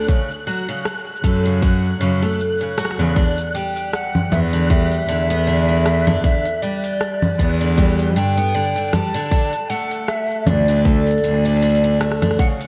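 A swung 78 BPM pulse in 4/4 from a tight, up-front electronic kick and an organic electronic kit of cabasa, congas, smooth hi-hat and rim click carries this wistful, autumnal folktronica excerpt in E dorian, where a bright, shimmering twelve-string acoustic guitar picks arpeggios through diffuse ambient delay over a close, bowed cello bass with a reedy gut-string tone, a grainy, flickering granular texture hovers in the background, and from 3.5 seconds a mellow, hollow jazz flute with airy chiff and vibrato sings the melody across Em7 and D, all bathed in lush hall reverb and vinyl crackle for a dreamy mix.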